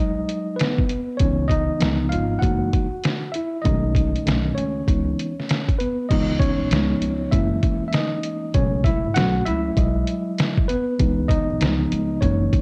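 A hazy, home-taped cassette sound wraps this mellow jazz-hop excerpt in digital ambience, giving it a cool, lo-fi hip hop character with a lazy swing. A worn, slightly out-of-tune tine electric piano sits up front, lightly overdriven and heard through its built-in speakers, carrying a soloing role across both sections while it voices lush extended chords such as C#m9, F#13 and Emaj9/B. Beneath it, a woody, dark upright bass played pizzicato on steel strings adds a thumpy low end. A sampler-style trip hop drum kit enters at 0.3 seconds, compressed, pitched down and muffled, with a thumpy kick, a medium-tuned snare, hi-hat and crash cymbal placed close in the mix. The groove shifts into a second section at 6.1 seconds, where the harmony moves through suspended and open voicings before returning to C#m9 and then C#9.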